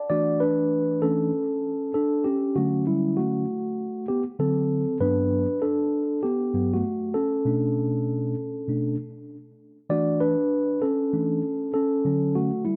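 Hip hop at 98 BPM in 4/4 with a 16th-note swing, this short excerpt cut from a longer piece has a cool, mellow mood carried by a solo tine electric piano spanning G2 to D5. The piano sounds clean and up front, played through built-in speakers and touched with analog delay and light reverb, inside a dark production. Its chords move from E9sus4 through Dmaj7, D7, Gmaj7 and Bm9 before circling back to E9sus4 and landing on Dmaj7 at 12.1 seconds.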